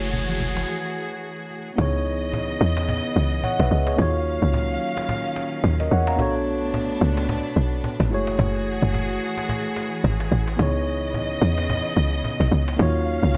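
A tight, punchy log drum bass stands out most in this soulful, deep amapiano excerpt at 109 BPM, arriving up front at 1.8 s with a percussive, FM-toned attack and a noise layer as the drop begins. Before that, a short opening pairs an electronic riser with a round, dark analog bass and bright, thin-skinned congas in the background, all three falling away by 0.7 s to leave a brief break. Throughout, a mellow, clean tine electric piano carries the accompaniment while a studio string section holds sustained, softly bowed chords with vibrato in an intimate, close sul tasto blend. A woody cajon with faint snares sits underneath the swung sixteenth-note feel. Minor ninth chords move from F#m9 through C#m9, D#m9 and Bm9, set in light, small-room reverb with a bright 1980s-style digital production sheen.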